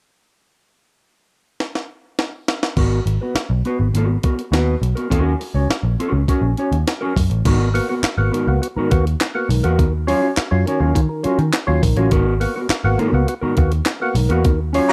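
A straight 103 BPM funk groove in 4/4 and G# dorian kicks off at 1.6 s with a fill on a gritty, pitched-up breakbeat sampler-style drum kit, its thumpy kick and high-tuned snare joined by hi-hat, handclaps and crash cymbal. At 2.8 s a round, foam-muted picked bass and a dark, fingered, clean electric guitar bathed in spring reverb settle over G#m9 and D#m7, and at 7.5 s a fat, lightly overdriven tonewheel organ adds percussive stabs through a slow rotary speaker. The cool, dry, close 1970s-style excerpt ends on a band accent just as a loose horn section with octave doubling and light vibrato arrives.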